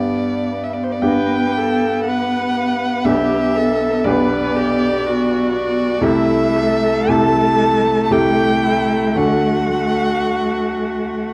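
In a rubato 3/4 at 50-62 BPM, this tender slow romantic movement for piano quartet in G major unfolds as a brief fragment, with a close, up-front violin singing the melody with vibrato, soft attacks and expressive portamento. A focused, rich-toned cello carries a low second line beneath it, while a brilliant baby grand piano with long sustain supplies accompaniment and a smooth, distant viola joins at 1.0 s. The harmony moves from G through G/B and Am7/C to D at 9.2 s, all set in light reverb with a dark, warm production.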